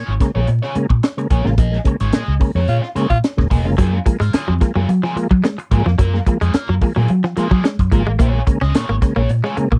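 A dry, close studio sound in the 1970s style, flecked with vinyl crackle, frames this short cut from a longer funk piece, sly and driving at 109 BPM in a straight 4/4. A tight acoustic drum kit with a high-tuned snare and tight kick sits up front beside a dark, round, foam-muted fingered bass that roams from Eb1 to Gb3. A tonewheel organ fires smooth stabs through chorus vibrato, a fast rotary speaker and tube saturation, while a biting overdriven guitar, picked and filtered through wah, fills in the accompaniment. The band hits an accent between 1.6 and 3.8 seconds, and inside it a raspy, growling tenor saxophone punches out a brief F4 at 2.7 seconds. From 3.8 seconds a twangy, scooped clean guitar, recorded direct and compressed with tremolo, takes up a riff as the harmony moves from Bbm7 to Gbmaj9 before returning to Bbm7 at 8.2 seconds.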